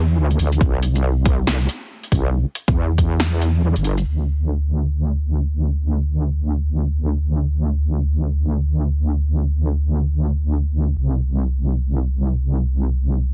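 A half-time, swung groove at 139 BPM opens this meditative, cavernous deep dubstep excerpt, with an overdriven drum kit of punchy snare, metallic hats and shaker running from 0.3 to 4.0 seconds over a deep, distorted electronic kick that drops out at 3.1 seconds. Beneath them, a heavy, detuned sawtooth wobble bass with chorus sits up front through the drop and carries on alone into the second section until 13.3 seconds, saturated yet mellow. The sound is dry and squeezed, like a heavily compressed radio broadcast.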